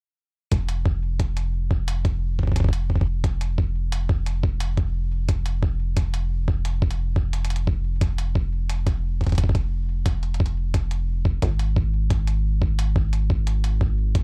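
A worn, warbling cassette sound with a warbly pitch drift and little reverb frames this short, intricate and glitchy IDM cut from a longer piece at 88 BPM in 4/4, where a gritty, thumpy sampler-style kick sits up front beside a dark, rubbery, wave-folded square bass with a resonant filter pluck and moving notch, while a compressed, pitched-up electronic hi-hat sits much lower in the mix, all three playing from 0.5 to 14.2 seconds.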